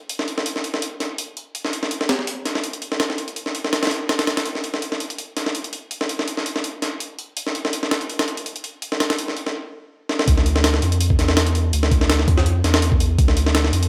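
Frenetic yet atmospheric, this drum and bass cut from a longer jungle piece opens with an up-front, gritty, pitched-up breakbeat kit of thumpy kick, high-tuned snare and hi-hats, compressed and re-recorded in a large room, before a fill at 10.1 seconds leads into a drop at 10.3 seconds where a deep, thick, saturated sine sub bass enters and sustains beneath the drums to the end.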